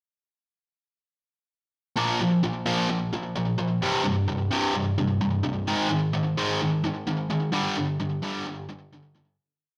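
A moderate, large studio reverb surrounds a bright, overdriven electric guitar placed up front, double-tracked and treated with a slapback echo. The whole piece is a driving, swaggering rock pre-chorus at 130 BPM in straight 4/4, tuned to A4 = 439 Hz, with the lone guitar entering at 2.0 seconds and picking palm-muted eighth notes through Bb5, C5, Ab5 and G5 power chords between C2 and Bb3. It fades out from 7.5 to 9.4 seconds.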